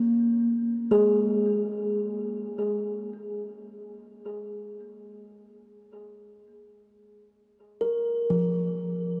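A solo kalimba, woody and mellow with a soft fingertip pluck and a hollow, ringing tone, carries this serene ambient fragment from a longer piece, playing alone for its full 9.2 seconds over a single rootless suspended chord. Delay trails each note, and a huge, wet reverb with a 7.3-second decay surrounds the up-front kalimba. The high end is gently rolled off, giving the sound a warm, calm glow.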